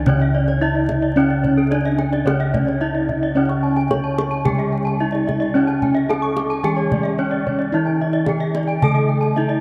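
Bathed in a vast, echoing cathedral reverb with a layer of vinyl crackle, this ceremonial, shimmering Balinese gamelan excerpt sets an up-front, dark and smooth bronze metallophone melody over round, mellow bossed gongs in the bass, a mid-forward background metallophone accompaniment, two bright metallophone arpeggio lines whose paired tuning gives them beating shimmer, and a tight, compressed, saturated kendang tucked softly behind.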